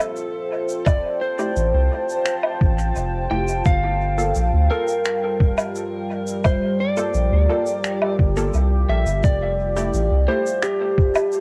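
An electric slide guitar carries a bright, slightly broken-up melody with cassette tape grit and dub echo over a deep, moody sawtooth pad and an acoustic small-room shaker, woodblock and finger snaps, setting a spacious ambient dub mood at 86 BPM in G dorian. A compressed, muffled electronic kick drum enters at 0.9 s, followed by a muted, mellow filtered chord stab with chorus and echo and a round, soft sub bass that sits up front from 1.6 s. The harmony moves from Fadd9 to Gm9 to Fmaj9 across this short cut from a longer piece, with the dark, detuned pad washing through chorus and reverb beneath the home-cassette ambience.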